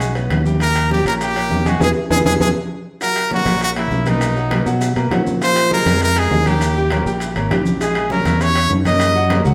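Recorded live by a band in a wet stone room, this fiery, danceable salsa at 200 BPM puts a brilliant, punchy trumpet melody with vibrato up front over a dark, round fingered electric bass and bright grand piano accompaniment, while distant congas, tight high-tuned bongos and grainy maracas sit further back alongside ringing metal-shell timbales, the band hitting an accent at 1.8 seconds with a drum fill at 2.1 seconds.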